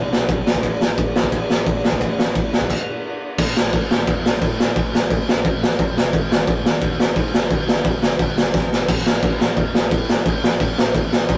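A boomy, gritty garage drum kit sits up front, crashing and riding through a rowdy, rebellious punk rock cut from a longer piece, while a growly fuzz-overdriven picked bass snarls further back in a rough rehearsal-room sound with little reverb, everything halting in a stop from 2.7 to 3.4 seconds before the drums hit a fill at 8.5 seconds.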